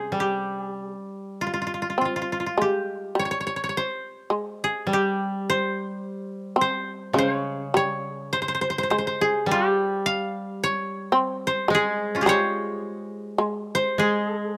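A woody koto melody, played with fingerpicks, opens this austere, calm Japanese chamber piece together with a buzzing, plectrum-plucked shamisen second line and a dry, lower koto accompaniment, all up front in the mix. The music moves at a slow 52 BPM in C miyako bushi with uneven, rubato beats, the shamisen lending a percussive, powerful edge until it stops at 14.0 s while both kotos sound on to 14.6 s. Close, detailed microphones and light reverb frame this short passage cut from a longer piece.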